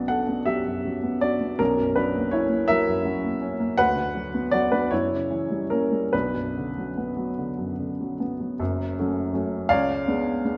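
A woody, intimate upright piano sits up front in a wet recital hall, its action noise audible, as this stormy, passionate romantic character piece in 6/8 unfolds with free rubato, spanning F#1 to F#5 and moving to F#m and C#7b9 as a new section opens at 8.6 seconds in this brief fragment of a longer work.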